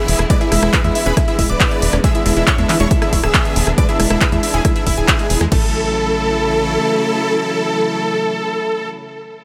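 Uplifting trance at 138 BPM in A major, soaring and euphoric, opening in a drop over E7 where a huge, detuned supersaw lead carries the melody up front above a bright, chorused analog pluck line, distant bowed strings holding sustained chords, and sidechain-pumped analog pluck arpeggios in the background, all riding a tight, driving sequencer bass, a punchy tape-toned kick and a drum machine of crash, handclaps, hi-hat and rim click, until the drums drop out at 5.6 s and the bass at 6.8 s, leaving lead and pluck trailing digital delay with the strings to float over A6 in light reverb.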